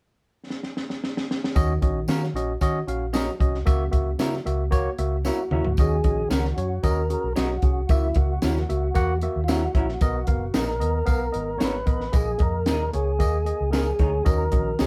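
A compact cocktail drum kit opens this urgent, driving excerpt of uptempo 1960s-style soul with a fill at 0.5 seconds, then a barky, lightly overdriven tine electric piano, a round, foam-muted fingered bass, a jingly tambourine in the background and dark, slightly broken-up guitar stabs join in, before a clear tonewheel organ with key click and slow rotary speaker takes the melody from 5.3 seconds in a live-room sound with light reverb.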